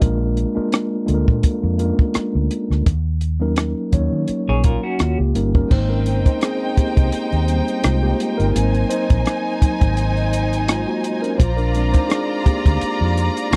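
A mellow, clean tine electric piano accompanies this smooth, lush 1970s-style soul fragment with a swung sixteenth feel, then takes a solo from 5.7 s as a bowed violin section with light vibrato joins. Beneath it, a round, foam-muted fingered electric bass and a compact cocktail drum kit with a punchy kick and rolled-off top hold the groove, while a twangy, slightly broken-up electric guitar with tremolo flashes a brief riff at 4.5 s, all in a dry, close studio sound with a warm mood.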